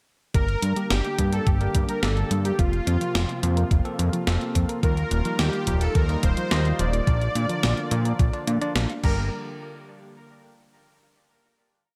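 A straight 4/4 pulse drives this short, moody synthwave piece, with a thumpy, tape-colored machine kick under an 80s drum-machine backbeat of closed hi-hat, crash and a gated-reverb snare. A fat, saturated analog bass sits up front, octave-jumping and pumping through sidechain. Behind it, a lush, warbling unison pad holds sustained chords with chorus and the same pumping motion, while a very quiet, round FM pluck with a thumb-piano quality runs an 8-step arpeggio. A bell-like tine electric piano adds bright, dotted-rhythm chord stabs with delay. On top, a smooth, full-bodied supersaw carries a motif-based melody in sentence-like phrases, also with delay, over a Gm, Fsus4, Ebadd9, Bb progression. The verse runs to 9.3 s, then a final-hit section closes the piece at 11.6 s in a dry space.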